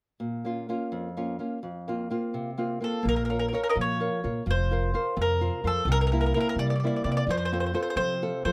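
Italian folk in the manner of a serenade, this short excerpt cut from a longer piece moves in a straight 6/8 at 85 dotted-quarter beats per minute, its mood passionate and romantic in B-flat harmonic minor. A fingerpicked nylon-string guitar opens alone at 0.2 seconds, its small, boxy tone laying down accompaniment over B-flat minor and F suspended chords. At 2.8 seconds a bright, picked mandolin enters with the melody, its doubled strings giving a woody ring high in the range, and at 3.1 seconds an upright bass joins with growly pizzicato notes on steel strings. The second passage pushes the harmony through C7 to a closing F major chord. All three instruments sit up front under close, detailed microphones with a light touch of reverb, so the grain of the strings comes through clearly.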